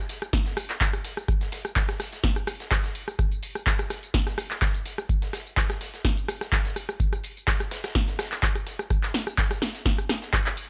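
Hypnotic and driving, this short house cut from a longer piece runs at 126 BPM in 4/4 with a light 16th-note swing. A deep electronic kick drum with an analog character sits up front from 0.3 seconds, its sound re-recorded in a large room. Alongside it, a punchy analog drum machine, also up front, supplies handclaps, hi-hat, rim click, snare and tambourine, with a short room on the snare, clap and hats and a tape-warm tone. Further back, a dusty soul sampler-style kit adds hi-hat and a medium-tuned snare, compressed and overdriven into a gritty texture, with high-pass filtering on its snare and hats. The whole passage stays in a single section over a dry, gritty hardware recording with a digital ambience, and a drum fill arrives at 10.5 seconds.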